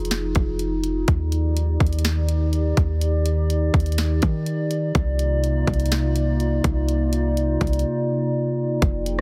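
A half-time trap groove at 124 BPM in 4/4 drives this melancholic, hazy slice of atmospheric cloud-rap, cut from a longer piece. The electronic drum kit enters at 0.1 seconds with a hard-clipped kick, sharp snare, rim click and bright hi-hats, sounding re-recorded in a small room and placed up front, then drops out from 7.9 to 8.8 seconds. Underneath, a deep, boomy 808-style bass with a sine body, a noise layer and a fast, decaying attack ranges from F1 to Eb3. A warbling, nostalgic, lo-fi pad built from detuned square and triangle tones holds sustained chords with a slow attack and long release, colored by chorus and its own reverb and pumping against a sidechain. The harmony moves from Fm7 to Ebmaj7 and settles on Cm11 at 5.0 seconds, tuned slightly sharp to A4 = 444 Hz, while the overall mix is dry and heavily compressed with a radio-like squeeze.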